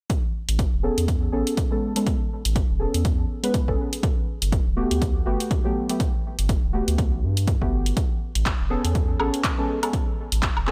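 Deep house at 122 BPM in A major, with a sunny, soulful mood and a swung sixteenth-note feel, taken from a longer piece. A punchy, overdriven electronic kick sits up front from 0.1 s, alongside a layered drum kit of handclaps, hi-hat and woodblock, both colored with overdrive and studio reverb. At 0.5 s a round analog bass enters, deep and dark with a sine-like core, tube saturation and sidechain pumping that makes it breathe. A mellow chord stab arrives at 0.8 s, soft and warbling with a detuned, vintage character, treated with chorus, analog delay and the same pumping. It moves from Amaj9 to Gmaj9 at 4.0 s and back to Amaj9 at 8.0 s, all set in a digital ambience.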